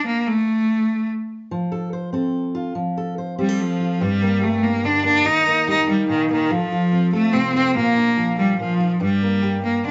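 Folk in 3/4 at 144 BPM, this stirring, bittersweet passage is cut from a longer piece and tuned slightly sharp, to A4 = 443 Hz. A single bowed cello carries the melody, bright and biting with an intense vibrato, sitting up front. It plays alone at first, falls silent at 1.1 seconds, and returns at 3.4 seconds to carry on to the end. A fingerpicked steel-string acoustic guitar enters at 1.5 seconds as accompaniment, its dark, woody tone coloured by old strings and an auditorium body. The harmony moves from F through Gm, Eb, F and Bb before settling back on Gm. Recorded live in one room with a moderate large studio reverb, the sound has a rounded top end, with nothing above 7.8 kHz.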